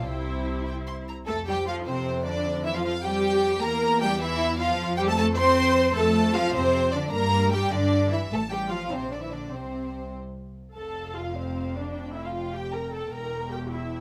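A lively, spirited classical-period string orchestra movement in 6/8, cut from a longer piece. An up-front violin section carries the melody with a pure, floating tone, while a dark, intimate second violin section sits in the background with light vibrato and a smooth top, and woody, lush violas with vibrato fill in the accompaniment. Rich cellos and distant double basses anchor the bass with soft attacks, and every section is bowed sul tasto under light reverb.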